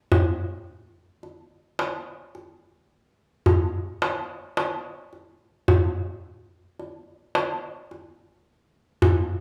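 Hypnotic and longing, this short excerpt cut from a longer Arabic piece rides a straight feel in 10/8 at 108 beats per minute, counted in eighths. A lone darbuka carries the whole recording, entering at 0.1 seconds and playing until 9.3 seconds. Its metal shell gives a crisp, deep voice, struck with hard hands and sitting up front in the mix. The drum has a large acoustic presence, set in a small room with the ambience of a band playing live together, while a generous studio reverb of 1.1 seconds lends it a lingering tail. The passage moves from its opening section into a second one at 5.7 seconds, keeping the odd-metre pulse trance-like throughout.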